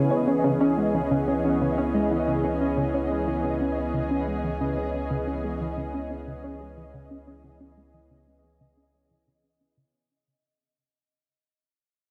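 Soaked in a lush hall reverb and the soft haze of a home cassette recording, this fragment of ambient, sequencer-driven space music feels expansive and hypnotic, fading out from its opening moment. A tight, driving sequenced synth carries the riff, its detuned sawtooth and pulse-wave tone plucked by a filter and thickened with chorus and tape echo, while a filter sweep moves across it throughout. Above it sits a thick, airy pad in detuned unison, bright and up front, holding sustained chords with a soft attack and a breath of noise. Underneath, a round analog bass anchors a single deep, dark note with a triangle-and-sine body. From 0.2 seconds a mellow, tempo-synced gated texture pulses quietly in a high register, its slow attack and long release blurred by chorus and its own reverb.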